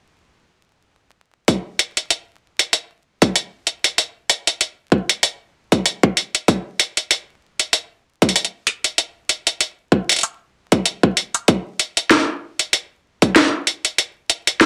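A dense, heavily limited master with a layer of vinyl crackle and a moderate studio ambience frames this gritty, swaggering glitch hop cut, taken from a longer piece and moving at 96 BPM in 4/4 with a light 16th-note swing. From 1.5 s, an up-front electronic drum kit with a cracking snare and metallic hi-hats plays alongside a tight, layered electronic kick that carries a high-pass filter and a small-room re-recording. The kick drops out at 13.3 s, leaving the snare and hats to carry on until 14.7 s.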